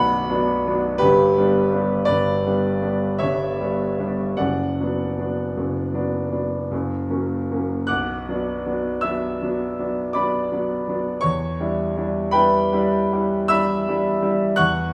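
This is a romantic classical nocturne for solo piano in B minor, cut from a longer piece, with a wistful, yearning mood. It moves slowly at 53 BPM in 9/8, its uneven beats and rubato giving the phrasing a breathing, unhurried feel. A concert grand plays the whole passage, its tone clear and open with a deep bass, spanning B0 to F#6. The harmony opens on Bm and passes through G and Bm/F# to an F# chord, then a second phrase begins at 7.9 seconds back on Bm and turns to Em7 at 11.3 seconds. The piano sits further back in a large studio, wrapped in a wet reverb with a 1.1-second decay.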